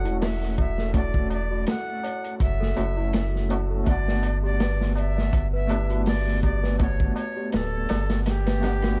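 A breathy, bright jazz flute carries the melody through vintage sampler grit and tape echo, floating over a dark, melancholic trip hop groove with a lightly swung feel, cut from a longer piece and moving from F#m7 to Gmaj7 at 3.9 seconds. A felt-muted upright piano with tremolo and a bell-like celesta playing arpeggios through tape echo fill the middle, while a round, deep analog bass with tube saturation sits up front beside a crunchy breakbeat kit that enters at 0.1 seconds with a punchy kick and rolled-off top. High-tuned tabla rings quietly in the background, and the dry, dusky production is coated in vinyl crackle.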